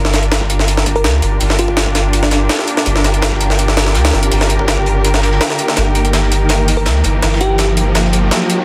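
A dense, heavily limited master with light reverb and vinyl crackle frames this dark, nostalgic drum and bass excerpt in G minor at 165 BPM, shaped as one continuous build-up. Up front, a compressed, pitched-up jungle kit hits with a thumpy kick, a medium-tuned snare and tape-toned hats, all high-pass filtered and re-recorded in a small room. A very quiet, saturated breakbeat kit with a high-tuned snare and rolled-off top sits beneath it. A soft, round dub sub bass holds the low end, and a lush bowed string section sustains chords moving from Gm7 to Eb/G, with vibrato, portamento and vintage 12-bit sampler grit. In the background, a bell-like, sparkling FM electric piano with chorus, phaser and dub echo plays brief melodic figures under a filter sweep, first at 1.0 seconds. An electronic riser enters at 1.5 seconds, and a drum fill from 5.8 seconds carries the build to the end.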